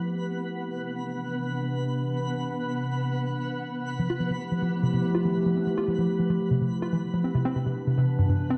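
Set in a wet echo chamber with a dark, warm production, this short IDM excerpt cut from a longer piece feels intricate and wistful, moving at 143 BPM in a straight 4/4 in F lydian. A warbly, tape-like pad carries sustained chords from the start, its detuned square and triangle tones sitting up front with chorus, a slow attack, long release and the grit of a vintage 12-bit sampler, giving it a nostalgic, lo-fi character. A filter sweep runs across this ambient pad for the whole passage. Alongside it, a faint granular texture twinkles with an octave-up FM shimmer, sparkling softly through its own reverb. At 4.0 seconds a dusty, mellow pluck enters with arpeggios, its detuned square and sawtooth tones carrying a fast attack, short decay, filter sweep, chorus and tape echo. The harmony moves from Fmaj9 to Cmaj9, returns to Fmaj9 at 4.0 seconds and settles back on Cmaj9 near the end.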